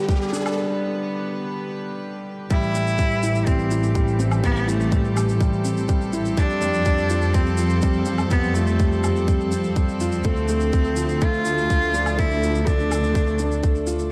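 A straight 4/4 pulse from a tight, up-front electronic kick and a produced shaker and woodblock drives this melancholic, cinematic piano and strings electronica piece, cut from a longer work, where a mellow felt-muted upright piano riff with audible action noise and delay plays over reedy, gut-string chamber chords and a brief electronic riser. At 2.5 seconds, an earthy, airy-bowed solo cello melody and a distant bowed double bass section with sidechain pumping enter as the chords move from Am7 through Fadd9 to Dm7, all within light small-room reverb.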